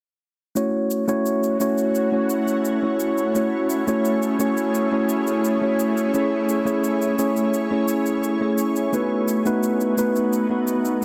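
A straight 4/4 pulse at 86 BPM is carried by a layered, electronic shaker set in a small room ambience, opening this relaxed, wistful sunset chillout excerpt in F# dorian alongside a mellow tine electric piano that sits clean and up front, softened by a low-pass filter and tape echo. At 1.4 seconds a shimmering, ethereal pad enters with detuned unison voices, an octave-up shimmer, granular texture, chorus and its own reverb, sustaining slow-attack chords. The harmony moves from F#m7 to Amaj7 at 6.1 seconds and B7 at 8.9 seconds, all within a lush hall reverb and a dense, heavily limited modern master.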